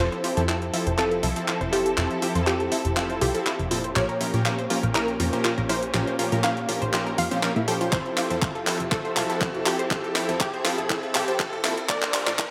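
A detuned, punchy unison pluck carries the melody over lush bowed strings, a tight, mellow sequenced synth arpeggio with chorus and phaser, sawtooth supersaw stabs with dub echo, and a funky, plucky analog bass, all pumping under sidechain as a very quiet riser builds in this euphoric, expansive progressive house build-up. An overdriven, up-front deep house drum kit of handclaps and hi-hat enters at 0.1 seconds with a running fill, and a deep, tape-warm electronic kick joins at 7.9 seconds as the harmony moves from Fmaj7 through Bbm6 and back, ending on Bbmaj7. A wet digital room reverb lends the mix a roomy sheen, and the section is cut from a longer piece.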